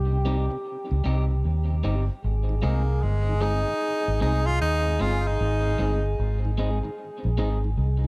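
Laid-back and uplifting, this reggae excerpt at 76 BPM in Ab major rides a swung 16th-note feel over Cm and Ab chords, with a dark, round, foam-muted fingered electric bass up front, a slightly broken-up picked electric guitar, a mellow tonewheel organ with key click and slow rotary speaker in the background, and a clear trombone with light vibrato on the second line, while a bright, close-miked tenor saxophone carries the melody from 2.6 to 6.1 seconds, the horns and guitar soaked in tape echo within a lightly reverberant, echo-heavy mix.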